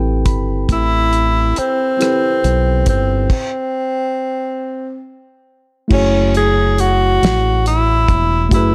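This sultry, late-night slow R&B cut in 6/8 opens with a short fill on a worn, slightly out-of-tune but clean tine electric piano, over a deep, round fingered electric bass that sits up front. A dry 70s drum kit with a fat snare, tight kick, rim click, hi-hat and crash joins almost at once, settling into a straight, unhurried feel at 46 dotted-quarter beats per minute in F# minor. At 0.7 seconds a breathy tenor saxophone takes the solo melody in a jazz style, with subtone, soft attacks and scooped notes, touched by a slapback echo and placed up front. The band halts for a stop at 3.3 seconds, and the harmony moves from Am9 to F#m9 as a new section begins at 5.9 seconds. Light studio reverb and a dark, warm production give the piece an intimate glow; it is cut from a longer performance.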